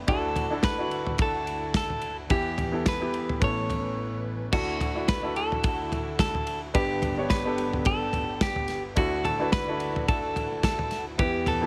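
Hopeful and uplifting, this short piano-driven pop excerpt in D major moves at 108 BPM with a light swing on the sixteenths, as a clear, polished grand piano with deep bass and a picked, clean electric guitar melody sit up front, both bathed in plate reverb. Behind them, a veiled, con sordino string section holds lush bowed chords with a soft attack and vibrato, while a loose indie drum kit with a punchy kick and dark cymbals drives the groove from a small room. A brief break at 4.0 seconds separates two statements of the same section, with the harmony moving from Dadd9 through Em and Aadd9 before returning via G to Dadd9.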